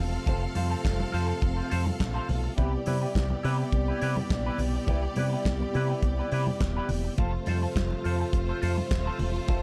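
A damped, dry 70s drum kit with handclaps, hi-hat, tight kick and snare enters at 0.3 s alongside very quiet, thin-skinned congas, setting a straight, joyful disco groove under an up-front fingered electric bass with an envelope filter. A clean, bright semi-hollow electric guitar with wah plays accompaniment while a lush, bowed studio string section carries a focused second line, and a lightly overdriven tonewheel organ holds sustained chords in the background through chorus vibrato and a slow rotary speaker. The danceable excerpt moves from F to Cmaj7 at 2.6 seconds and back to F, all within a dark production touched by light reverb.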